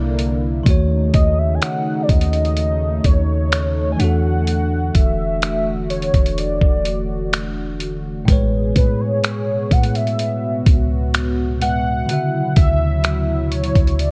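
The recording carries a worn, cassette-tape character, with warbly pitch drift and a digital ambience around the instruments. This is a romantic, tender slice of contemporary R&B in a straight, unhurried 4/4, cut from a longer piece. A velvety synth lead carries the melody, its detuned sawtooth and triangle voices smooth and full-bodied, softened by chorus, vibrato and tape echo. Beneath it, a bell-like tine electric piano rings out bright and direct accompaniment, while a warm analog pad holds slow-blooming sustained chords that breathe with sidechain pumping. A deep, boomy 808-style bass of clean sine tone decays darkly under the harmony, and from 0.2 s a gritty, compressed sampler-style kit sits up front with finger snaps, hi-hat and a thumpy kick. The chords drift from C9 through E9sus4 to Amaj9 and Dmaj9.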